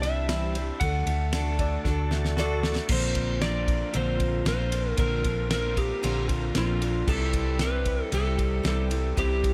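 Folk rock and heartland rock with a hopeful, jangly mood, cut from a longer piece, where a dark, tape-echoed slide guitar carries the melody over a full-bodied jumbo acoustic guitar, a slightly broken-up riff from an electric guitar through a small old amp, a round hollow-body bass and a dry, up-front 70s drum kit with a fat snare, while a reedy tonewheel organ with fast rotary holds very quiet chords, a worn upright piano adds a brief second line from 1.6 to 2.8 s, and a drum fill leads into the new section at 2.9 s.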